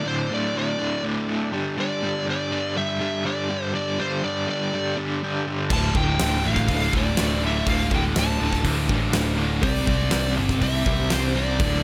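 Hard rock at 122 BPM in a straight 4/4, aggressive and menacing, cut from a longer piece. A bright, crunchy rhythm guitar with tremolo plays an up-front riff from the start, while a smooth lead guitar with digital delay carries the melody. A very quiet, gritty tonewheel organ holds thick sustained chords through a slow rotary speaker with audible key click. At 5.7 seconds the band arrives on a D minor chord: a high-gain distorted guitar riffs in the background, a dark, round, foam-muted fingered bass punches underneath, and a huge arena drum kit drives with a fat snare, punchy kick, hi-hat and crash, all in light small-room reverb.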